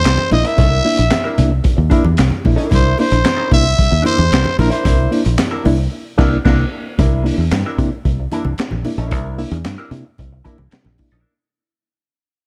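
Funk at 112 BPM in C mixolydian, this energetic, gritty passage cut from a longer piece rests on a C9 chord, with a raspy, growling trumpet carrying the melody up front until 5.2 seconds. Beneath it, a crunchy breakbeat kit with a punchy kick, high-tuned snare, dark cymbals and handclaps drives alongside a bright, foam-muted fingered bass. A clean hollow-body jazz guitar through wah, reedy and slightly out-of-tune electric piano stabs with fast tremolo and tape echo, and very quiet low-tuned congas fill the small, dark-toned room before a band accent at 5.9 seconds and a fade-out from 7.0 seconds.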